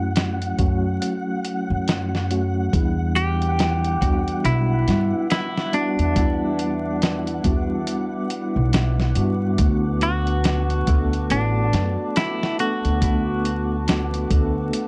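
Hypnotic and melancholic, this trip hop excerpt in E minor drifts at 70 BPM with a swung 16th feel, as a dusty, gritty sampler-style drum kit with a thumpy kick and a woody pizzicato upright bass sit up front beneath a mellow tine electric piano treated with tremolo and tape echo and a faint, flickering grainy texture, before a clean, picked semi-hollow electric guitar melody enters at 3.2 seconds and a deep, detuned analog pad with chorus and phaser joins at 3.5 seconds, the whole set in a dry hardware sound laced with vinyl crackle.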